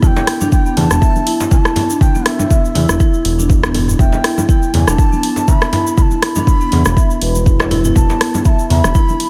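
Afro house with a driving, warm mood, cut from a longer piece, where an up-front deep electronic kick and a smooth sawtooth synth bass, pumping under sidechain, anchor a layered deep house drum kit of hi-hat and rim click. A marimba played with soft mallets spins mellow, round arpeggios through delay, while a breathy bass bansuri carries the melody with vibrato and a crisp attack, its bamboo tone echoed by delay. Bright, damped congas sit in the background alongside a grainy tube shaker and a deep, saturated djembe that enters at 0.2 seconds, all held in a light, small-room reverb.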